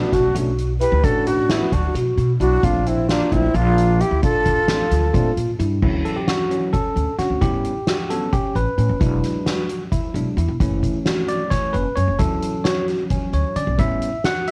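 A breathy silver concert flute leads this bright, intricate progressive instrumental, its unsteady vibrato and crisp attack sitting up front with a cassette-tape tint and an analog delay until 5.3 seconds. A mellow flugelhorn shadows it as a distant, roomy second line in the background, while a clean, bell-like tine electric piano comps throughout and a second, phaser-treated one spins arpeggios. Set in D major and 7/8 at 264 BPM counted in eighths with a straight feel, the piece moves from Bm7 and Bbmaj7 into a second section where the electric piano takes a solo from 5.8 seconds over Dmaj9, A9, E7 and F#m7. Underneath, a woody, growly pizzicato upright bass and a drum kit played with soft mallets, featuring dark cymbals, a fat snare and a boomy kick, sit up front. A moderate studio reverb and the cassette character of this home recording shape this excerpt, cut from a longer piece.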